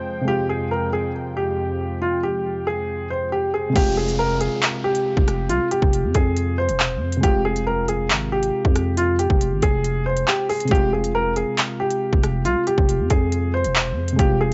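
A dark, mellow grand piano with audible action noise carries an ominous, tense F minor melody through this half-time drill excerpt at 138 BPM, over soft, warbling electric-piano-like synth keys and a smooth analog pad that drops out at 3.7 seconds, just before a growling 808-style bass and an overdriven, hard-clipped drill kit of crisp hats, handclaps, rim clicks and crash arrive at 3.8 seconds with a riser in the background, all caught in a dry, gritty cassette sound.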